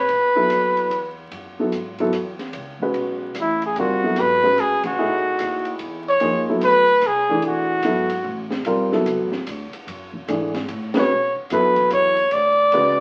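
Modal jazz in a swung 3/4 at 147 BPM, hypnotic and spiritual, cut from a longer piece and heard through the crackle of a very old 78 rpm record with a wet studio reverb. A clear trumpet with light vibrato carries the melody up front, beside a natural baby grand piano with short sustain, while a woody, growly pizzicato upright bass sits in the background and an open acoustic drum kit adds a high-tuned snare, boomy kick, hi-hat and ride. Esus2 and F#m11 harmonies give way at 6.2 seconds to a B dorian section moving through Bm7, D and Bm11, with band accents at 4.8 and 10.9 seconds.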